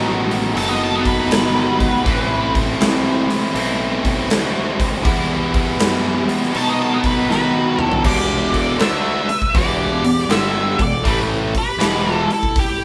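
Heavy and brooding, this short cut from a longer piece blends blues rock power trio with southern rock at a slow 80 BPM in E minor, its eighth notes carrying a lazy swing. A bright, overdriven electric guitar, double-tracked and up front, drives the riff from the start, while a growly fuzz bass played with a pick adds weight underneath. A huge arena drum kit enters at 0.3 seconds with a punchy kick, medium-tuned snare, toms, hi-hat and bright crash cymbals, and a drum fill leads into the second section at 8.0 seconds. Just after the downbeat, an octave-fuzz lead guitar with a warm, distorted tone takes a solo over chords moving from B7 through Amadd9 and Emadd9, back to B7 and landing on Em. At 7.3 seconds a dark, smooth lead guitar slips in behind it with a quieter second line, and the whole band sounds as if playing live together in a small room with a moderate reverb.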